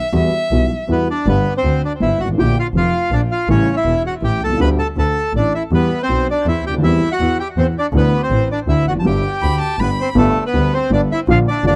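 A warm, bowed violin opens this nostalgic, elegant tango fragment, expressive and close with vibrato, portamento and a soft attack. A dark, woody upright piano with long sustain and a biting, earthy bowed double bass enter beneath it at 0.1 seconds, and from 0.9 seconds a reedy, bright bandoneon with tape echo carries the melody up front. The bandoneon plays in G major at 162 BPM in a rubato 3/4, the violin returns as a second line at 9.4 seconds, and the recording has a dry, close 1970s studio sound.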